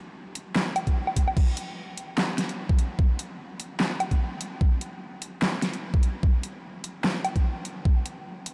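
A knocking, overdriven electronic kick sits up front from 0.9 s alongside a layered dubstep kit of huge snare, handclaps, hi-hat, woodblock and crash cymbal that starts at 0.4 s, driving a chaotic, menacing half-time dubstep excerpt with a swung 16th-note feel, all soaked in a vast, dreamy reverb.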